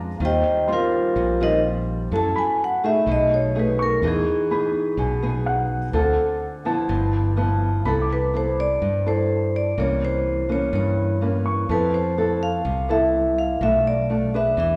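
A relaxed, straight 4/4 groove at 125 BPM carries this sophisticated bossa nova clip, cut from a longer piece. The vibraphone, played with medium mallets and the motor off, takes the melody from 0.2 s with a metallic, ringing tone, sitting up front and featured as a solo through the opening 7.9 seconds. Beneath it, the fretless electric bass is round, dark and direct, while the nylon-string guitar adds small, thumb-plucked accompaniment with audible finger squeak. A mellow, worn baby grand piano sits low in the mix in a high register, with a smooth vintage character, and drops out at 13.6 s. The harmony moves through rich extended chords such as Eb69, B13, Cmaj13 and Fmaj7#11, with a shift into a new section at 7.9 s. A recital hall reverb gives the whole ensemble a spacious, church-like ambience.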